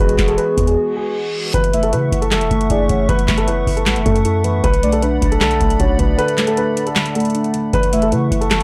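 A half-time trap beat at 155 BPM in F# minor drives this eerie, hard-hitting hip hop fragment, with a booming analog drum machine up front (deep kick, crisp snare, metallic hi-hats and handclaps) over a boomy, tube-saturated 808-style bass. A dark, mellow concert grand piano carries the melody through a low-pass filter, while a round, octave-layered synth lead with chorus, tremolo and tape echo adds a second line and a hollow, flute-like pad holds airy chords. A reverse cymbal sounds at 0.9 s within a break that begins at 0.8 s, muted felt-like synth keys join at 1.5 s, and the mix has a dry, gritty hardware character.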